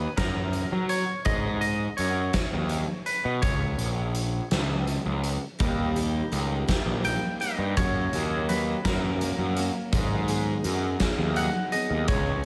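A growly, overdriven fuzz bass sits up front in this angsty, cathartic burst of quiet-loud alternative rock in 6/8, joined by a big rock drum kit with a fat snare and punchy kick, while a clean, twangy electric guitar carries the melody through slapback echo and digital delay, a bright dreadnought acoustic guitar adds picked arpeggios from 5.6 s, and a lush hall reverb lends the mix a big arena sound.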